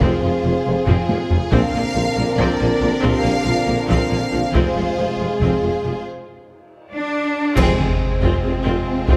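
Moderate scoring-stage reverb surrounds this relentless, epic film-score fragment in 7/8, cut from a longer piece. An intimate chamber violin section carries the melody with light vibrato and a soft, sul tasto touch, while a lush symphonic violin section sings an expressive second line above smooth, even violas and cellos. Dark, distant French horns and warm trombones hold sustained chords in the background, and woody double basses join a very quiet, vintage-toned tuba to anchor the bass. A taiko ensemble struck with heavy sticks drives the music, and dark cymbal swells, clash cymbals and concert bass drum enter at 4.5 seconds, close and dry. After a break and a drum fill, the ensemble accents at 7.6 seconds, where articulate hard-mallet timpani on calf heads strike and a huge, dark impact sits barely audible beneath.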